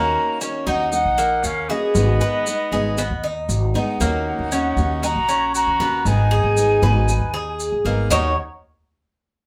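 Warm and sultry, this short cut from a longer Cuban son and guajira piece moves at an easy, straight 4/4 pace over an unhurried sway between Ebm7 and Abm. An airy, hollow concert flute carries the melody with vibrato and a crisp attack, sounding distant. Beneath it a clear, punchy trumpet adds a second line with scooped notes, and a metallic Cuban tres with doubled strings spins arpeggios. A bright picked steel-string acoustic guitar with finger squeak accompanies, a growly, woody upright bass sits up front, and grainy maracas enter at 0.4 seconds, all played live in one room with a wet studio reverb.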